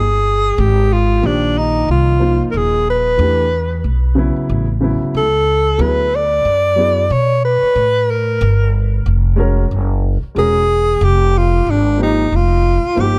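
Hip hop with a jazz lean, this nocturnal, mellow fragment of a longer piece moves with a light swing on the sixteenths. A breathy alto saxophone carries the melody from the start, close-miked and whispered, its soft attacks, scooped notes and vibrato giving the solo an intimate, jazz-style voice touched by tape echo. An upright bass plucked pizzicato sits up front beside it, its woody steel-string tone anchoring the low end. At 1.2 seconds a dark grand piano enters quietly beneath them, playing natural-sounding accompaniment through a drifting sequence of mostly seventh and sixth chords. A small room ambience wraps the trio until the fragment ends at 13.2 seconds.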